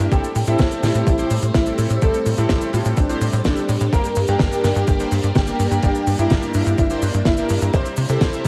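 Bittersweet and melodramatic, this italo disco fragment sets an intimate, boxy grand piano melody with audible action noise over swirling, warbling string machine chords, glossy detuned polysynth stabs and a tight, punchy sawtooth sequencer bass kept up front, driven by an overdriven, thumpy electronic kick and a dry 70s kit of cabasa, hi-hat and fat snare, all in a dreamy, reverb-soaked mix dusted with vinyl crackle.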